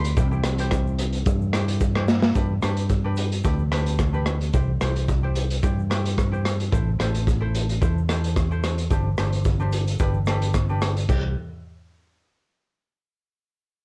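A lightly reverberant home-cassette sound frames this carefree, bouncy calypso excerpt at 110 BPM in C major, where a shimmering, metallic steel pan lead played with hard rubber sticks sits in the background only until 2.1 s, when a drum fill from the gritty, saturated garage kit, with its punchy kick and dark cymbals in a small pumping room, leads into the next section at 2.4 s, while a growly, amped fingered electric bass sits up front, a light fingerpicked ukulele moves through C, G, Am and Gsus4, and a grainy egg shaker stays very quiet underneath.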